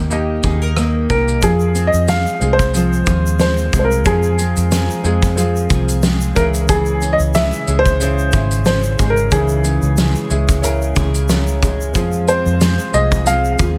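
Sunny and carefree, this short acoustic pop excerpt moves at 91 BPM in 4/4 with a gentle sixteenth-note swing, settling on an Eb chord before shifting to F minor at 1.4 seconds, Db minor at 6.4 seconds, and back to F minor. A woody upright piano with short sustain carries the melody up front, touched with digital delay, while a soft, felt-muted upright piano adds mellow, intimate accompaniment in the background. Behind them, a double-tracked nylon-string guitar with a deep classical body and a fingerpicked steel-string dreadnought playing arpeggios through digital delay fill out the full-bodied acoustic bed. A dark, round, foam-muted electric bass sits up front with a loose indie drum kit whose fat snare, tight kick, rim click and shaker sound distant and roomy. A grainy, bright tube shaker slips in low in the mix from 1.4 seconds, and light reverb gives the whole track an easy, open glow.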